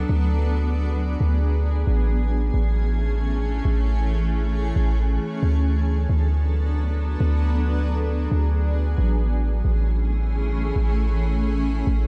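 Hip hop in a half-time feel, floating and dreamy, this short excerpt drifts between D6 and Amaj7 chords. A granular cloud pad holds sustained chords throughout, its blurred, evolving tone glowing bright inside its own reverb. Up front, a deep, boomy 808-style bass with a fast attack and decaying, mellow body anchors a dark, softly ambient production.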